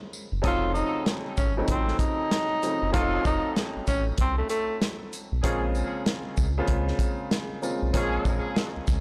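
A breathy tenor saxophone, full of vibrato and scooped notes, carries a jazz-tinged melody from 0.5 s to 4.8 s over a gritty, reflective boom-bap hip-hop groove at 96 BPM in Bb minor, swung on the sixteenths. A dark, woody upright piano with audible action noise opens the music. It is joined by a round, detuned analog bass, a punchy small-room soul drum kit with hi-hat, kick, shaker and snare, a jingly vintage tambourine in the background, and distant, tight horn stabs treated with delay. Light reverb and a blown-out, overdriven sound give this short excerpt its grit as the harmony moves from F7b9b13 to Bbm9.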